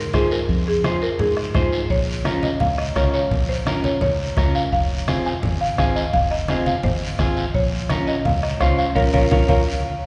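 Cumbia with a fiery, passionate mood, this short cut from a longer piece moves in straight 4/4 over a minor-key alternation of two chords. A buzzing marimba played with medium hard mallets carries the melody, its hardwood bars sounding woody and vintage. Beneath it, a fingered electric bass is round and foam-muted, and a clean, picked semi-hollow guitar adds dark hollow-body accompaniment in the middle register. The percussion blends a close, soft-beater bombo, low-tuned congas with thick skins and hard hands set in the background, and a raspy guiro. The whole band hits a shared accent at 9.0 s, and the recording sits in a church-like hall with a long, lingering reverb.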